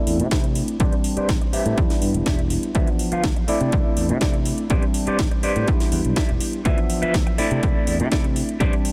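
Sensual and funky, this short cut from a longer filtered disco house track moves at 123 BPM in a straight 4/4, with a filter sweep running across its full 8.9 seconds. A tine electric piano carries the accompaniment through a smooth loop of C69, Am11, Em7 and Dm69, its clean, warm tone colored by phaser, sidechain pumping and a low-pass filter. A dark, clean electric guitar plays a fingered riff above it, shaded with tremolo and the same pumping and filtering. Underneath, a fingered electric bass sounds bright, growly and punchy, also pumping under the filter. The punchy, overdriven electronic kick sits up front from 0.3 seconds, while a layered house kit adds a cracking snare and metallic hats, with pumping on the hats and cymbals. Light reverb and digital ambience surround the parts.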